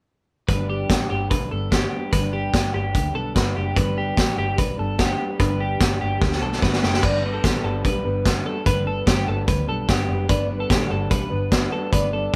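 Jangly indie pop at 147 BPM in 4/4 with a straight feel, this bright, youthful clip in G major is cut from a longer piece and sounds like a band playing live in one room under light reverb. From 0.5 seconds, a fingerpicked, plugged-in jumbo acoustic guitar with fresh strings gives a full-bodied accompaniment, while a twangy, compressed twelve-string electric guitar rings out clean arpeggios above it. Underneath, a vintage foam-muted picked bass sits round and amped, and a gritty, saturated vintage drum kit stays up front with a high-tuned snare, tight kick, hi-hat, crash and dark, rolled-off cymbals. A drum fill at 6.2 seconds leads into a new section at 7.0 seconds, where a soft, octave-layered synth lead enters with the melody. Its warm blend of triangle, sawtooth and sine tones over a sub octave is sustained and fast in attack, colored by chorus, tremolo and vibrato.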